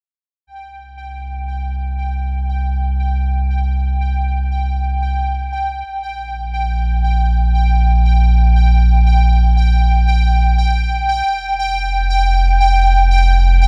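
Hypnotic and cosmic, this short fragment of ambient, sequencer-driven space music drifts in free time. A deep, round sine sub bass and a pulsing, tempo-synced texture of detuned triangle voices, softened by chorus and reverb, both fade in from 0.5 seconds and sit up front. Over a light reverb and a dark, warm production, the harmony moves from C5 to Gm/Bb at 5.9 seconds and settles on Fsus2 at 11.3 seconds.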